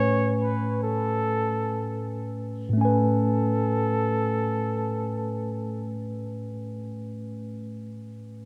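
In free time, this smooth, relaxed R&B fragment in A major, tuned to A4 = 439 Hz and cut from a longer piece, sets a breathy, jazz-style flugelhorn solo with light vibrato and scooped notes up front from 0.0 until 6.0 seconds over a mellow, clean tine electric piano that opens on an Amaj9 chord through its built-in speakers and rings on alone until 8.4 seconds, all bathed in a lush hall reverb within a rough home demo mix.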